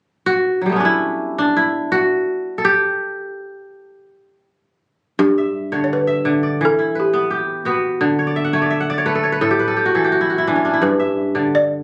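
Warm and joyful, this short clip of West African traditional music moves at 85 BPM in a straight 4/4, set in G lydian. The kora opens alone at 0.3 seconds, its fingerpicked arpeggios ringing and crisp as they range from G2 up to F#5, sitting up front in the sound. At 5.2 seconds the balafon enters with a woody, round melody between G4 and D5, struck with soft rubber mallets and sitting forward in the mids. The harmony moves from G through Em, D and A5 before returning to G, and the kora adds a fill between 8.2 and 10.8 seconds. The recording carries the close, wet ambience of a small room with a club-like reverb, captured on a phone, giving the cut-off passage an intimate, live feel.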